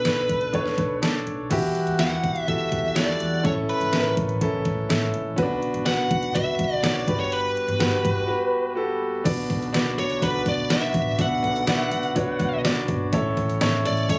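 A smooth, overdriven electric lead guitar carries the melody over a clear, intimate grand piano with audible action noise, which plays a short fill at 0.8 seconds before a mellow, round tonewheel organ with key click and slow rotary speaker joins in the background at 1.5 seconds, while a woody, growly pizzicato upright bass and an up-front, overdriven electronic pop drum kit with knocking kick and deep snare support this bittersweet, earnest piano-driven pop fragment, captured on a phone in the room with club reverb and compression.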